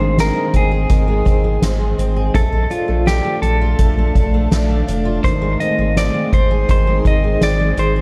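A clean, compressed electric guitar carries the melody from the opening moment, tinted with tremolo and digital delay, while a shimmering, octave-doubled fingerpicked twelve-string traces lush-chorused arpeggios and an airy, detuned pad with phaser hovers in the background over chords moving from Ab to Bbmaj7 and back. Beneath them a deep, saturated sine sub bass sits up front, and a soft-mallet drum kit with a fat snare and boomy kick enters at 0.2 s at a relaxed 83 BPM in straight 4/4. This ethereal, floating slice of dream pop, cut from a longer piece, has a dark, warm production with light studio reverb.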